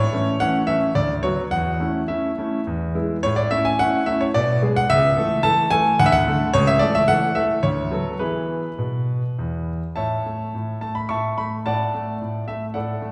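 A reverberant recital hall, with a 1.9-second tail, surrounds this short cut from a longer piece, and the room is heard from further back. Within that space, a solo grand piano sits up front with a clear, intimate and natural tone, and its action noise is audible. The music is a playful, graceful classical-period sonatina in A major and 3/4 time, taken at 108 BPM with a rubato feel. The piano spans C#2 to C#6 and plays the whole 13.1 seconds. The opening phrase moves through tonic, dominant and subdominant harmonies before settling on E. A new section begins at 10.0 seconds, returning to A before turning to D over an A bass.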